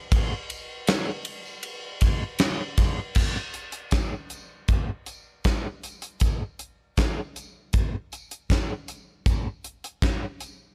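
A straight 4/4 rock beat at 79 BPM runs through this wistful, dreamy excerpt, carried by a gated 80s drum kit of kick, snare, hi-hat, crash and ride that plays from start to finish, with a fat snare, tight kick and bright cymbals sitting up front in an airy, polished big-room sound. A jingly tambourine sits distant in the background throughout, and the passage moves into a new section at 3.2 seconds, all within a dark production carrying little reverb.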